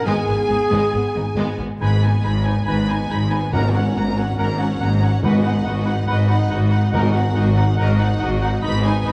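Heroic adventure film score with a swashbuckling, adventurous spirit, cut from a longer piece: lush, vibrato-rich violins carry the melody over sustained chords from a dark, distant French horn section, punchy trumpet stabs, ringing thumb-plucked harp arpeggios, and a full bowed string bed of violins, focused violas, smooth cellos and expressive double basses holding the bass. Second lines come from a bright clarinet, an airy, hollow flute section and, from 1.8 s, a smooth-topped cor anglais, as the music builds to the end. Timpani struck with hard mallets join from 3.5 s to 7.5 s, all set in a moderate scoring-stage reverb with a dark production.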